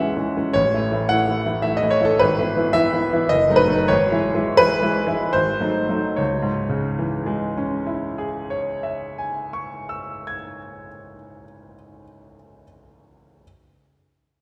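Romantic classical character piece for solo piano, brooding and stormy, in a flowing triple metre shaped by free rubato. A concert grand piano carries the whole fragment from 0.0 to 13.4 seconds, its tone warm and smooth with a deep bass and a vintage cast, sitting up front in the sound. The opening phrase slows markedly between 1.4 and 6.2 seconds, passing through darkening harmonies that gather on a tense dominant chord before settling back on the minor home chord. A contrasting passage begins at 6.2 seconds. The instrument sounds in a church or concert hall, with a lush, lingering reverb that lends the dark harmonies a spacious glow. The recording is cut from a longer piece.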